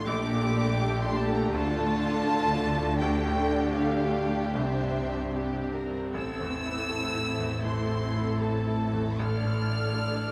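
Moving and sorrowful, this brief cut from a longer cinematic film score unfolds in D minor at a rubato pace of roughly 74-84 BPM in 4/4. A violin section carries the melody high in its register with a dark, woody, close tone and bowed vibrato, while a second violin section sings a lush, smooth line beneath it. A bright, brilliant grand piano supplies accompaniment across a broad span, joined by a focused viola section sitting in the background. Low strings anchor the harmony: a distant cello section, entering at 0.2 s, bows with expressive portamento, and a double bass section adds a soft-attack, close foundation. The harmony drifts from Gmadd9/Bb through Dm, Gsus2/D, Cadd9 and Am before settling on Dm/A at 9.2 s, all bathed in a moderate scoring stage reverb.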